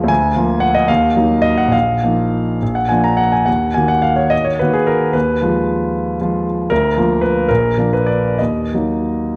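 This is a romantic classical character piece for solo piano in Eb minor, bittersweet and stormy in mood, moving at 60-80 BPM in a rubato 6/8. The grand piano plays alone for the full 9.4 seconds, ranging from Bb1 up to Bb5 and sitting up front with an intimate, natural tone, long sustain and audible action noise. The harmony circles around the home key, moving from Bb/D to Ebm, then through Bbsus4 and Bb, and later touching Fm7b5/Eb before settling back on Ebm at 8.4 seconds. A moderate scoring-stage reverb lends the sound a sense of space, and the overall production is dark and warm. The passage is a single section cut from a longer piece.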